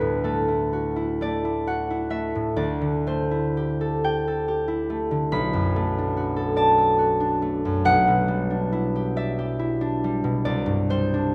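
A solo concert harp opens at once, its acoustic, ringing tone sitting up front in a moderate recital hall reverb, fingerpicked across a range from B1 to B5. This gentle, mysterious classical fragment moves in a slow, rubato 6/8 at roughly 40-50 BPM counted in dotted quarters, with the harp tuned to A4 = 439 Hz. Its harmony drifts through Dadd9, Gsus2/D, Bm7 and G69/B before reaching Cadd9 at 10.5 s, and the piece is cut off at 11.3 s as part of a longer work.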